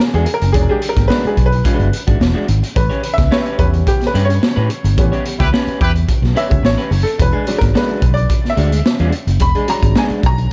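A dark, gritty small-room sound frames this strutting funk excerpt in E mixolydian at 108 BPM, moving between E9 and A9 chords over a saturated, pumping garage drum kit with a punchy kick and a rolled-off top, and an up-front, amped fingered electric bass. A brilliant, woody upright piano carries the solo throughout with short, delay-tinged stabs, while a twangy, slightly broken-up electric guitar through a small old amp sits lower in the mix as accompaniment. A band accent lands at 5.0 seconds, and a clear, tight vintage horn section adds a brief second line from 5.4 to 5.9 seconds.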